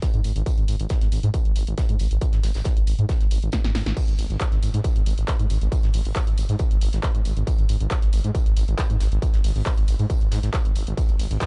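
A distorted, layered electronic kick sits up front from the start of this industrial, hypnotic peak-time techno cut, joined by a punchy, tape-warm analog drum machine with crash, ride, claps and pumping hats, a dry, damped 70s kit with a fat snare and tambourine set in the background, and a thick, menacing detuned saw bass that beats and pumps under the kick, all in a dark small-room mix where a drum fill at 3.5 seconds leads into the drop at 4.0 seconds.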